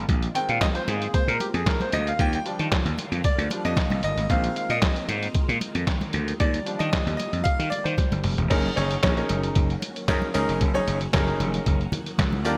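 Bright, lightly reverberant 1980s-style digital production frames this smooth, danceable excerpt of early-eighties boogie funk at 114 BPM in 4/4, moving between Bb9sus4 and Ebmaj9 before settling on Gb6 at 8.5 seconds. A growly, overdriven slap bass and a muffled, pitched-down sampler-style drum kit with a thumpy kick, handclaps and gated reverb sit up front, while very quiet congas with soft hands and a swirling, phased string machine in the background add texture. The brilliant grand piano takes a solo from the start until 8.5 seconds, just as a drum fill leads into the next section.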